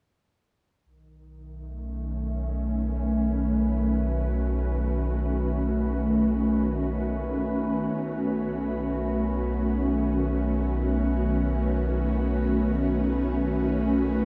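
Floating in free time, this peaceful, warm ambient passage in B mixolydian rests on a single B9 chord throughout. A deep, round sine sub bass holds a low B up front from 0.9 seconds. At 1.9 seconds an ethereal, airy pad enters with slow-attack sustained chords between D#3 and B4, its detuned sawtooth and wave-folded layers given a full-bodied, mellow glow by ensemble chorus and its own reverb. At 8.4 seconds a very quiet analog drone joins on B3, its nasal, evolving pulse-width tone thickened by chorus. Everything sits in a vast, echoing space with a 7.5-second reverb tail, and the passage, cut from a longer piece, unfolds as one unbroken section.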